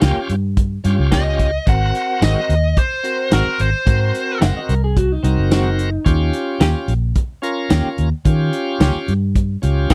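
Straight-eighth soul blues at 109 BPM in 4/4, swaggering and gritty, moving from Eb7 to Ab7 and back to Eb7 in this short excerpt. A tight, rolled-off soul drum kit with hi-hat, kick, snare and tambourine sits up front beside a dark, round, foam-muted fingered bass. A shouting tonewheel organ with key click, light overdrive and slow rotary speaker plays accompaniment, while a clean, compressed electric guitar with tremolo plays stabs. A biting, overdriven lead guitar carries the melody from 1.1 to 4.4 s, and a slightly broken-up guitar through a small old amp adds a second line until 6.3 s, with little reverb on the mix.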